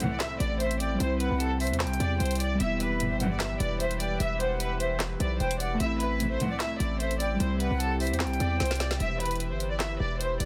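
Melancholic and brooding, this trap hip hop cut moves at 150 BPM in a half-time 4/4 feel in E minor, with a lush, expressive violin section carrying the melody through low-pass filtering and tape echo while a pure concert flute adds a vibrato-laden second line above it. Round, mellow electric-piano-like synth keys with chorus and a smooth sawtooth pad sit in the background, dark bowed string stabs punctuate the harmony, and a punchy, heavy 808-style bass enters at 0.4 s beneath an overdriven trap kit of woody snare, bright hi-hats and handclaps. A drum fill at 8.6 s leads into a closing passage where the flute and keys drop out at 9.0 s, all within a dense, heavily limited modern master.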